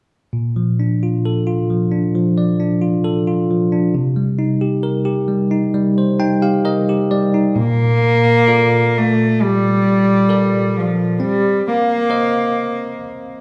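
Set in a reverberant recital hall, this tender, heartfelt pop excerpt opens with a bright, bell-like tine electric piano laying down Bbmaj7 and Cm7 chords, adding a brief fill at 5.7 seconds before a pure, floating bowed cello enters at 7.6 seconds to carry a soft-edged sul tasto melody.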